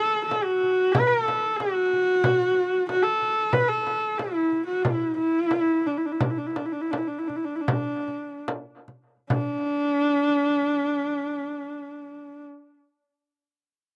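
A rich, husky horsehead fiddle, bowed up front by a single player with vibrato, soft attacks, expressive portamento and a slapback echo, carries the melody through this galloping, vast Mongolian folk excerpt, joined by a small, bright frame drum played close until 9.7 seconds, as the music slows from 3.5 seconds before a new section arrives at 9.3 seconds, set in light reverb under an open outdoor sky.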